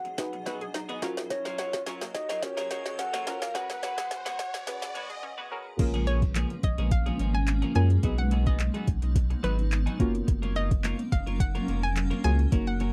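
Dance-pop at 107 BPM with an energetic, driving feel, this excerpt builds over a drum fill, background riser, cloudy granular pad, twangy twelve-string electric guitar riff, deep mellow chord stabs, squelchy blip arpeggios and a round, octave-layered synth lead, then drops at 5.8 seconds as an up-front sine sub bass enters, soon joined by a hollow, bouncy square pluck melody above the smooth R&B kit's woody snare and metallic hats, all in a dry, close studio sound.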